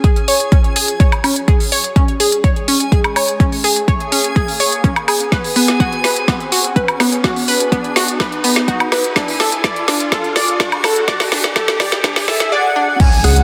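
A warbling, round analog pluck runs through this progressive house excerpt at 125 BPM, its detuned sawtooth-and-square arpeggios coloured by chorus, tape echo and sidechain pumping over a steady straight 4/4. Alongside it, an up-front electronic kick joins a layered deep house kit of woody snare, smooth hi-hats, crash cymbal and woodblock, while a background riser and a dreamy, reversed granular texture with its own built-in reverb fill out the space. The passage works as one long build-up with a filter sweep, a drum fill from 5.3 seconds and chords moving from C#5 through B5 to D, setting a driving yet dreamy mood. At 12.3 seconds a bold unison lead arrives, its mellow, sub-octave sawtooth tone carrying vibrato, analog chorus and tape echo. An impact then lands, and a fat, saturated analog bass enters on C#2 at 13.2 seconds just as the excerpt cuts off. The dense, heavily limited master sits in a lush hall reverb.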